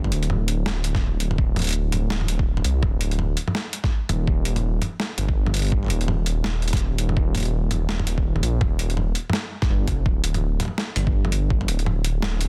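A swung, half-time groove in 4/4 drives this tense, cinematic slice of drum and bass, cut from a longer piece. A dark detuned saw bass sits up front from start to finish, deep and rumbling in the low register, its saturated, detuned sawtooth and sine tone beating, with a fast attack and sustained notes. A boom bap sampler-style drum kit runs throughout, its hi-hat, medium-tuned snare and toms overdriven, compressed and gritty, re-recorded in a small room and placed up front. An electronic kick drum enters at 0.9 seconds and stops at 11.6 seconds, adding a thumpy, overdriven punch with the same sampler-style, compressed, gritty character. The sound is dry and dense, with a heavily limited modern master that keeps the whole passage close and pressing.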